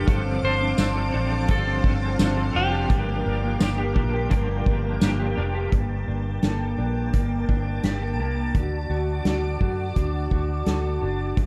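A soft-mallet drum kit sets a straight 4/4 pulse at 85 BPM from 0.1 s, its punchy kick and medium-tuned snare sitting up front while hi-hat and tambourine add a distant, roomy shimmer beneath this hazy, ethereal dream pop passage in G minor, cut from a longer piece. A vintage muted fingered electric bass holds the low end with a dark, round, foam-muted tone, and an ensemble organ-string pad spreads mellow, evolving chords with a soft attack under its ensemble chorus. An electric guitar through a small old amp plays lo-fi, slightly broken-up arpeggios coloured by analog chorus and digital delay, while a bright, twangy twelve-string electric guitar adds picked accompaniment through tremolo and ensemble chorus until 5.7 s. Above them, a dark, clean electric guitar carries a short melody between G4 and C5, bathed in spring reverb and digital delay, and it stops at 5.0 s. The harmony moves from Dm7/G to Gm7, then shifts toward G harmonic minor at 5.7 s with Gmadd9 before landing on D, all under light reverb and studio ambience.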